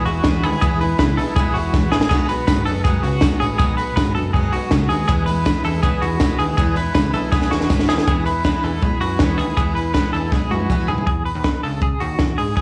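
Jangly indie pop with a breezy, youthful mood, carried by a shimmering, octave-doubled twelve-string acoustic guitar and a clean, twangy electric guitar playing arpeggios through tremolo, tape echo and plate reverb. A plucky analog bass with a sawtooth filter pluck sits under a compact cocktail drum kit that is dry and up front, with a high-tuned snare, dark cymbals, gated reverb and several fills. A very quiet, jingly tambourine joins from 2.1 to 8.0 seconds, and the twelve-string drops out at 11.1 seconds as the harmony settles on Emaj7, all with a light cassette-tape sheen in this passage cut from a longer piece.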